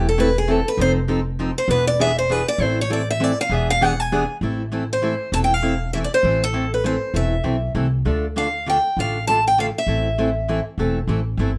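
Bittersweet and virtuosic, this excerpt of fast acoustic string swing in a lilting 3/4 at 198 BPM in A minor features a bright, boxy, picked parlour steel-string guitar carrying the melody up front and soloing through the first 4.4 seconds, over a second picked steel-string guitar with a dark, old-stringed, concert tone for accompaniment and a thumpy, woody pizzicato upright bass on gut strings, all set in a moderate studio reverb as the melody guitar stops at 10.6 seconds.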